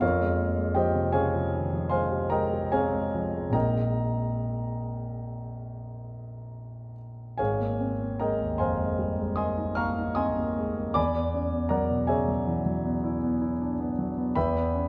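A clear, up-front concert grand sits in a wet scoring-stage reverb with a two-second tail, its deep bass and smooth, vintage tone spanning from Ab1 to F6. This dreamy, serene impressionist solo piano passage, cut from a longer classical piece, drifts in a rubato 9/8 and is tuned slightly high at A4 = 441 Hz. Lush extended harmonies such as Fmadd9, Bb9sus4, Abadd9 and E9 unfold over roughly 14.9 seconds before reaching Em6 at 14.4 seconds.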